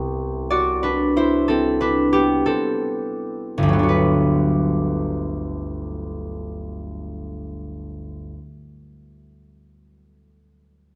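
Played in a free, rubato 4/4 that slows over the first 3.9 seconds, this serene, peaceful classical piece for solo concert harp is a brief passage cut from a longer work. The harp sits up front, fingerpicked and ringing across a span from G1 to E5. Its warm, acoustic tone sits in moderate studio reverb as the harmony moves from Cmaj7 to Gmaj7 at 3.9 seconds.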